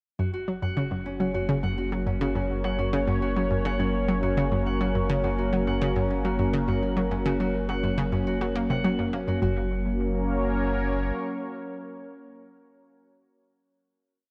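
Bathed in a lush hall reverb with a cassette-tape character, this expansive, luminous piece of ambient, sequencer-driven space music in Gb major moves at 104 BPM in a straight 4/4. A bright, detuned sawtooth pad with chorus sustains slowly shifting chords, while a fingerpicked acoustic Celtic harp rings through a 7-step loop with analog delay. An up-front, round analog pluck with a fast attack cycles a 5-step riff with chorus and delay that drifts against the bar until 9.7 seconds, and a deep sine sub bass holds the root as the music settles into a final chord at 9.4 seconds.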